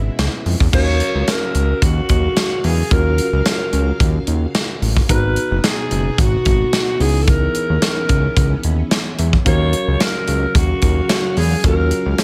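A raspy, growling alto saxophone with slapback echo carries a distant, jazz-style melody over a fat, detuned analog bass, a punchy modern drum kit with gated reverb, a clean tine electric piano in the background and lush, chorused string-machine chords in this slick, danceable early-eighties boogie funk excerpt cut from a longer piece.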